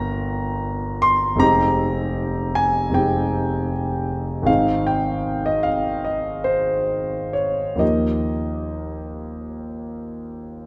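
Impressionist classical solo piano, luminous and serene, in which a warm, smooth concert grand with a deep bass and a vintage, up-front sound drifts in rubato 4/4 through chords of Gm7, Fm11 and Ab before settling on Ebadd9 at 7.8 seconds, all softened by a moderate recital hall reverb and dulled highs in this brief excerpt from a longer piece.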